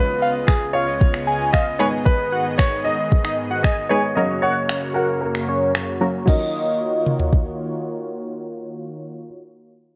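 An up-front, tape-warm R&B drum kit with a soft kick, finger snaps, toms and crash drives this energetic dance-pop excerpt in Eb minor at 114 BPM, playing from 0.5 to 7.4 seconds. A clear, polished baby grand carries the melody over a round, detuned analog pluck with chorus and a smooth supersaw holding sustained chords, while a fat, wave-folded sawtooth lead with phaser, vibrato and delay sings high from 0.2 to 7.8 seconds; the pluck, pad and lead all pump with the sidechain. A filter sweep runs through the first 6.3 seconds as the harmony moves from Db7 through Abm and Gb to Ebm7, and the light digital ambience is coloured by a worn cassette's warbly pitch drift.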